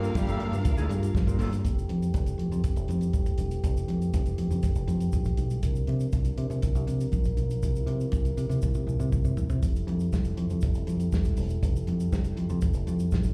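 Driving and glamorous, this disco passage is cut from a longer piece and has the feel of a live gig heard through a club's sound system, with a roomy reverb around it. A fingered electric bass, round and punchy, sits up front with an acoustic soul drum kit whose dry, dark sound pairs a punchy kick with a medium-tuned snare, and a drum fill arrives at 8.6 seconds. Underneath, a distant French horn section holds sustained chords throughout, while congas with soft hands and a grainy tube shaker sit quietly in the background. For only the opening 1.6 seconds, a lush, bowed violin section with expressive vibrato carries a second line and a clean, fingered electric guitar adds accompaniment, both touched by slapback echo. The harmony opens on Gm9, then moves through Fmaj9 and C9sus4 before settling back on Fmaj9.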